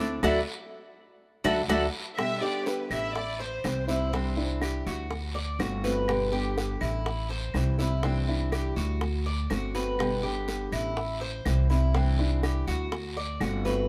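A woody, thumpy upright bass sits up front in this sunny Cuban son and guajira excerpt at 123 BPM in G major. Around it are a fingerpicked nylon-string guitar with audible finger squeak and a metallic, double-strung Cuban tres that plays a brief melody until 1.9 seconds, while a second tres keeps up arpeggios throughout. Tight, high-tuned bongos and small-room claves sit in the background beside a raspy guiro, and a band accent and drum fill lead into a cycle of G, Am7, Cadd9 and D7 at 2.2 seconds, where a lush, bowed violin section adds a smooth second line until 4.4 seconds over light reverb.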